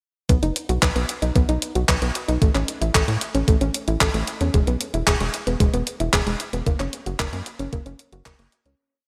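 Italo disco in B major at 113 BPM, sunny and romantic, with a short verse that cycles through B, A, E and F# before fading out from 6.0 seconds. A punchy, saturated sawtooth sequencer bass drives sixteenth notes under a mellow, nasal pluck playing an eight-step arpeggio treated with chorus, delay and cassette-tape color. A clean 12-bit drum machine supplies up-front claps and closed hi-hats with gated reverb, while a thumpy four-on-the-floor electronic kick runs until 8.4 seconds, all in a bright 1980s-style digital production.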